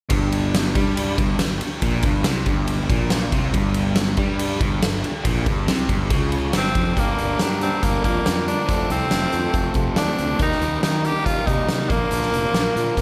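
A straight 4/4 pulse at 140 BPM drives this gritty, swaggering classic rock passage in G minor, cut from a longer piece, with a huge arena drum kit up front, its fat snare and punchy kick ringing naturally in a big room alongside hi-hat and ride cymbal. Beneath it, a fuzz-soaked fingered electric bass growls with bright, overdriven punch, while two overdriven electric guitars sit in the background playing riffs, one compressed and warm, the other darker and touched with spring reverb. At 6.6 seconds a raspy tenor saxophone takes the melody up front, edgy and forceful with a light vibrato in a pop-style solo voice. A very quiet picked twelve-string acoustic guitar joins at 7.0 seconds, adding boxy, shimmering octave-doubled accompaniment as the harmony moves from G minor through F and Eb to Bb. Light reverb and a small room ambience frame the whole mix.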